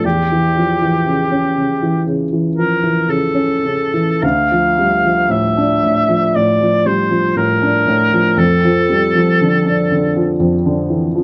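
Elegiac and yearning, this short passage, cut from a longer piece, is a romantic classical duo for oboe and grand piano, moving at a slow 59 BPM in 4/4 with a flexible, rubato feel. The oboe carries the melody between G4 and F5, its tone coloured by vibrato and a roomy, distant quality even as it sits up front. Beneath it, the grand piano accompanies in the lower register from D2 to D4, sounding smooth and vintage with a short sustain. The harmony moves from A7/E to Dm at 4.2 seconds and on to Dm/F at 8.4 seconds. The oboe falls silent at 10.4 seconds, leaving the piano to close out the passage at 11.2 seconds, all set in moderate studio reverb within a dark, warm production.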